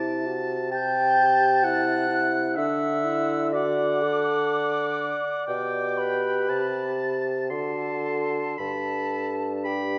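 Classical chamber music for wind quintet, this tender, serene slow romantic movement in three unfolds with a gently rubato feel, cut from a longer piece. A clear oboe on the second line, a warm, present French horn and a mellow, up-front bassoon on the bass open together, and at 0.7 s a pure, metallic silver flute with soft attack and vibrato takes the melody above a dark, distant clarinet. A wet recital hall reverb surrounds the ensemble as the harmony settles home onto G at 8.6 s.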